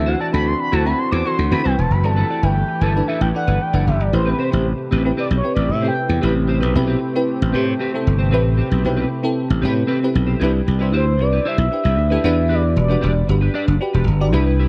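An upbeat, glossy 115 BPM pop excerpt opens with a smooth, expressive analog synth lead soloing over sparkling bell-like FM electric piano with phaser and chorus, a shimmering retro pulse-width pad, punchy, growly slap bass up front and a twangy, clean electric guitar riff, moving through D9, G69 and Am9 in a dark production with light reverb. The lead stops at 6.2 seconds, the pad ends at 10.4 seconds, and the lead returns at 11.0 seconds over Cmaj7 and Em7.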